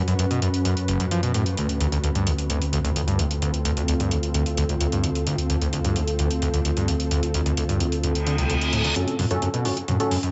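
A mix with light digital ambience and highs that roll off at 7.8 kHz carries this relentless, hypnotic stretch of driving peak-time techno at 130 BPM, tuned to A4 = 438 Hz and moving from F#5 to Dm. A screaming, squelchy acid line, distorted and resonant with lush chorus and digital delay, sits up front over a growling, thick FM bass that drops out at 8.9 seconds, while an ethereal, airy pad with ensemble chorus and slow attack hovers behind a layered electronic kit of metallic hats and toms. A reverse cymbal and riser arrive at 8.2 seconds to launch a build-up, and at 9.0 seconds an edgy sync-sweep polysynth enters with nasal, detuned stabs under a filter sweep as the harmony shifts to F#m.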